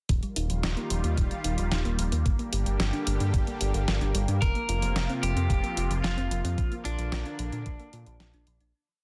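Cinematic and moody, this short synthwave piece rides a straight 4/4 pulse, with a thumpy, tape-warm electronic kick and a detuned 8-bit drum machine tapping out closed hats and an 80s-style snare backbeat beneath a round, dark analog bass running a sequenced sixteenth-note line with tube saturation. A lush, thick unison pad holds sustained chords through chorus, phaser and sidechain pumping, while a mellow, tine-like thumb-piano-style pluck cycles an eight-step arpeggio in the background, its filter sweeping under chorus and delay as the chords move from Ebadd9 through Gm and Fsus4 to Bb. At 4.4 seconds a bright, twangy, lightly driven lead guitar enters with a repeating riff through tape echo, and the dense, heavily limited mix fades out from 5.9 seconds.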